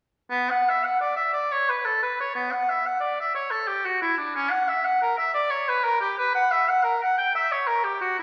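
A clear oboe with light vibrato and a soft attack plays alone from 0.3 to 8.2 seconds in this grave, solemn passage cut from a longer baroque-style classical fantasia in B minor, moving freely in rubato at 60 BPM in 12/8 across a range of B3 to G5, heard from further back in a wet scoring-stage reverb with a 1.9-second decay.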